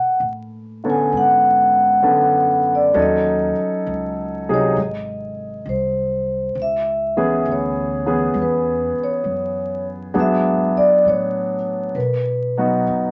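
A melancholic, intimate jazz ballad moves at a slow 66 BPM in 4/4 with a gentle swing on the eighth notes, heard as a 13.1-second cut from a longer piece. The vibraphone carries the melody from the very start, its soft-mallet tone mellow and ringing with the motor off, close-miked and dry so it sits up front and full. Pizzicato upright bass enters at 0.2 seconds, woody and thumpy on steel strings, sitting low and well back in the balance. The grand piano joins at 0.8 seconds with a warm, natural, long-sustaining accompaniment, its action noise audible and its sound up front. Chords drift from Bm9 through half-diminished and minor-seventh shades before settling on B, while a small room's reverb and a layer of vinyl crackle lend the recording a worn, late-night character.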